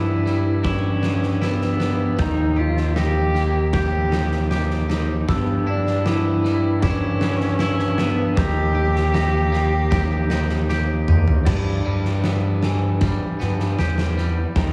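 A fuzzed, overdriven electric bass sits up front in this hopeful, euphoric post-rock passage at 78 BPM in a straight 4/4, its bright, punchy, picked tone anchoring the low end. A single muted cello carries the melody through a dark, veiled con sordino sound with light vibrato and a slapback echo, while a big, dark acoustic drum kit enters at 0.3 seconds with a fat snare, punchy kick, crash and toms. A clean, twangy, scooped electric guitar and a mellow, airy glockenspiel played with rubber mallets both spin arpeggios with slapback echo, the bells ringing softly in the background. Far back in the mix a very quiet pedal steel guitar, fingerpicked and compressed, holds sustained slide chords with volume swells as the harmony moves between G6 and Eb. The cello ends at 10.7 seconds, a drum fill leads into a new section at 11.5 seconds where the glockenspiel drops away, and the track is cut from a longer piece in a small studio room with light reverb.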